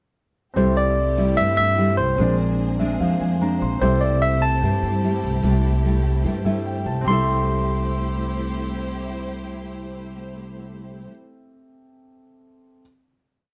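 Lightly reverberant, this sunny, breezy bossa nova in C major moves at 148 BPM, with a bright, barky tine electric piano carrying a motif-based melody up front over woody pizzicato upright bass playing a dotted root-and-fifth line, full-bodied fingerpicked nylon-string guitar with thumb bass and syncopated plucked chords, and a distant bowed string section holding soft-attack sustained chords with vibrato and portamento, while a clear, intimate grand piano with audible action noise sits in the background holding drop-2 chords and adding fills at 2.6 and 6.2 seconds before everything settles onto a final chord at 7.1 seconds.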